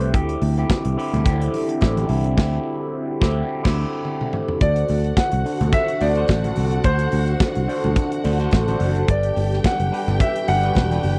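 A dry, close studio sound with a 1970s character frames this driving, sultry disco excerpt at 107 BPM in 4/4, with a 16th-note swing of 56%. From the start, a punchy, up-front drum kit with a medium-tuned snare and a rolled-off top sits alongside a dark, round, foam-muted picked electric bass, while a gritty, barky overdriven tine electric piano plays accompaniment through a phaser and a mellow French horn section holds tight, very quiet sustained chords. Bright, low-tuned congas with hard hands enter at 0.7 seconds, sounding distant in a large room and very quiet. The band hits an accent from 2.4 seconds, and a drum fill leads into a new section at 4.6 seconds, where the harmony moves from D9sus4 to D7. There a clear, polished grand piano takes the melody and a lush, distant string section adds a second line with vibrato and portamento, with the chords arriving on Gmaj7 at 9.1 seconds.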